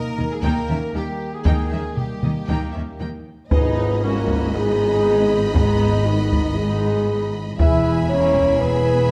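A straight 4/4 pulse from a taiko ensemble struck with hard sticks drives this relentless, epic orchestral film cue, cut from a longer piece, its drums close and dry against a wet recital-hall reverb. Two bowed violin sections carry the top: one sings the lush, vibrato-rich melody while the other traces an expressive second line with a soft attack and smooth top. Violas fill the accompaniment in the background, and cellos and woody double basses anchor the bass. Mellow, close-miked French horns hold sustained chords over darker trombones, while distant, roomy trumpets punch out stabs. The harmony moves from D# to G# minor at 3.5 seconds, where a full-band accent lands and a very quiet tam-tam with bright cymbal shimmer enters until 5.5 seconds, before the chords shift to E at 7.6 seconds.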